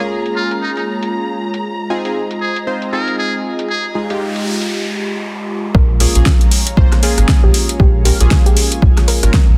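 Deep house at 117 BPM in Bb dorian with a swung, late-night smoothness, this excerpt opens on a buzzy, metal-muted jazz trumpet line up front over breathy pad chords, chorused analog keys stabs with sampler grit and tape echo, a veiled con sordino violin section, and an overdriven kit of fat snare, rim click and metallic filtered hats, moving from Bbm7 through Ab6 to Fm9. A noise sweep enters at 3.9 seconds, and at the drop at 5.7 seconds a punchy overdriven kick and a deep, full sub bass with octave arrive, with the sub bass, pad and keys all pumping, while a soft, round pluck melody sits in the background under lush chorus. The dense, heavily limited master keeps reverb light.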